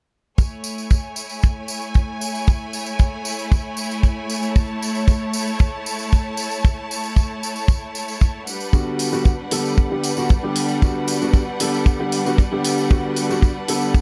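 Feel-good, sunny nu-disco at 115 BPM in A major, cut from a longer piece, where a tight, dry kick drum sits up front alongside a tambourine as bright, lush bowed strings with vibrato hold sustained chords that pump against the sidechain, moving from Amaj7 to Gmaj7 before a boxy concert grand piano with long sustain and analog delay enters at 8.7 seconds and a layered, tape-warm electronic hi-hat, re-recorded in a large room, joins at 9.0 seconds, the whole mix set in a small room.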